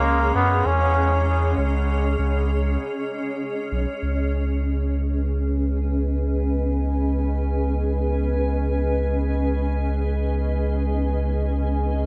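Ambient dub in free time, hazy and spacious, this excerpt from a longer piece opens on C#m with a brief nasal, straight-muted trombone line carrying light vibrato and dub echo that sounds only until 1.3 seconds. A cloudy, detuned granular pad holds blurred sustained chords with its own built-in reverb, and from 4.0 seconds a filter sweep moves over it as the harmony settles on C#5. Beneath, a round, sine-like sub bass sustains deep and warm through the full 12.1 seconds in an echo-heavy mix with light reverb.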